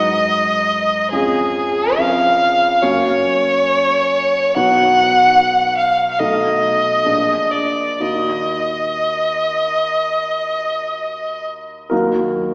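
A rich, smooth-toned single violin sings the yearning, elegiac melody up front with vibrato, its bowed line falling silent at 11.4 seconds. Beneath it, an intimate concert grand piano with deep bass and audible action noise carries the accompaniment through 12.5 seconds, following a chord path from Abm7 through B7 and Bb7 to a close on Ebm. This romantic classical duo passage, cut from a longer piece, moves with a flexible rubato feel and sits in a wet concert hall reverb, heard with a small-speaker sound.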